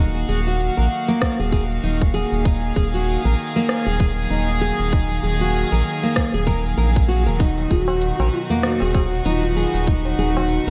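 A loosely swung 97 BPM pulse in 4/4 drives this earthy organic downtempo excerpt in Eb minor, with crisp hi-hat, rim click and shaker from 0.2 s, a tight electronic kick at 1.2 s, a round, deep analog bass, and sustained chords from a rich, floating string section, both bass and strings pumping with the sidechain. A full-bodied nylon-string guitar plays fingerpicked arpeggios through digital delay, finger squeaks audible, over an Ebmadd9 chord that moves to B/D# at 7.4 s. Low-tuned tabla with a short ring joins, and at 7.7 s a breathy, hollow low ney takes the melody with vibrato, close-miked and echoed by delay, all under light reverb.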